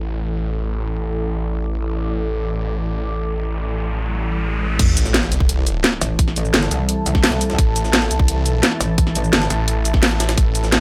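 A straight 4/4 pulse at 172 BPM drives this aggressive, futuristic excerpt of dark technical drum and bass in A minor, opening on a deep, moody ambient pad with a filter sweep and a snarling, growling saw bass pumping up front, while an electronic riser and sub drop arrive at 3.6 seconds. The drop lands at 4.8 seconds with an impact, bringing in a tight, tape-warm electronic kick, a layered kit with cracking snare, bright hats, cabasa and crash, and a gritty, pitched-up jungle sampler kit sitting in the background. From 6.0 seconds a metallic, wobbling FM bass joins the distorted growl, all under light reverb.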